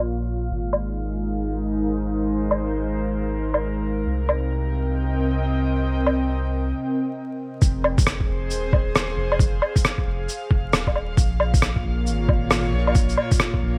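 An airy, breathy pad drifts through this wistful, nocturnal future garage excerpt at 135 BPM in F minor, holding detuned, chorused chords that pump with sidechain over a deep, round dub sub bass that pumps as well. Muffled, pitched-down woodblock, shaker and rim click come in at 0.7 seconds, a filter sweep runs through the opening into a short break, and a thumpy kick drum enters at 7.6 seconds. Light digital reverb, vinyl crackle and a low-pass filter give the mix a hazy, late-night sheen.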